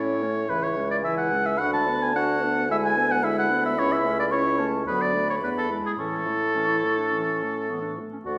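A quick, spirited classical-period movement for wind quintet in A major at 109 BPM, this cheerful excerpt is cut from a longer piece and unfolds in a reverberant recital hall. An airy, hollow flute with vibrato carries the melody from 0.5 seconds, while an up-front oboe with light vibrato sings a second line above a punchy clarinet, a distant, roomy French horn and a soft-attack bassoon holding the bass. The harmony moves from C#m through Bm/D, E7/D and A/C# before E7 settles on A at 6.0 seconds.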